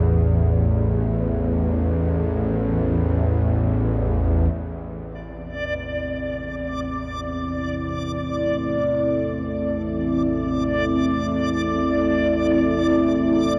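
In free time, this unsettling, ominous dark ambient drone in A minor opens on a tense, string-like bowed drone, low in range, with a sawtooth edge, a noise layer and vibrato. It sits on an open A5 chord before the harmony settles into A minor at 4.5 seconds, where the drone begins a long fade-in. At 5.2 seconds a reversed, dreamy texture appears, high, swelling and granular, with a soft attack and shimmer reverb. A deep, moody pad follows at 5.6 seconds with sustained chords in the middle register, its detuned, warbling tone carrying a vintage character, a sub octave and chorus. All three parts sit up front inside a huge, wet ambient reverb that lingers for seconds, and the overall production is dark and warm. This is a passage cut from a longer piece.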